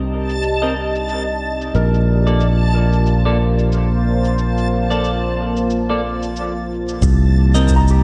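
A dark, warbling pad of sustained chords bathed in chorus and reverb and a growly, up-front fingered electric bass with tube saturation open this excerpt from a longer piece, setting a hazy, deep ambient dub feel in 4/4 with a sixteenth-note swing. A shaker, low-pass filtered and touched with dub echo, soon joins them. A clean, picked electric guitar adds stabs through a low-pass filter and dub echo, a reversed, detuned swelling texture hovers high above, and a mellow concert harp enters at 1.7 seconds with ringing arpeggios and delay in the background. At 7.0 seconds a new section begins as a very quiet electronic kick drum briefly appears, the mix sitting in a light digital ambience.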